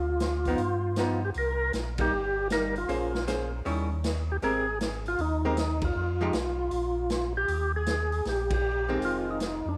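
A swinging 4/4 groove at 157 BPM drives this soulful, bluesy soul jazz organ trio cut in Eb mixolydian, heard as a brief slice of a longer piece. Up front, a fat, lightly overdriven percussive tonewheel organ carries the melody between D4 and Bb4, its key click and second-harmonic percussion colored by chorus vibrato and a slow rotary speaker. A second tonewheel organ, piping and scooped, holds down the bass from F1 to G2 with the same slow rotary and chorus vibrato. A distant, roomy big-band drum kit with a punchy kick, medium-tuned snare, hi-hat and ride cymbal enters at 0.2 s, while a dark, clean, picked hollow-body electric archtop guitar comps from 0.5 s, drops out at 6.3 s and returns briefly near the end. The band hits accents at 1.9, 5.8 and 8.4 seconds over chords moving from Dm6 and G7b13 through Abmaj9 and Ebsus4 to Fm7, all set in a moderate echo chamber reverb with small room ambience.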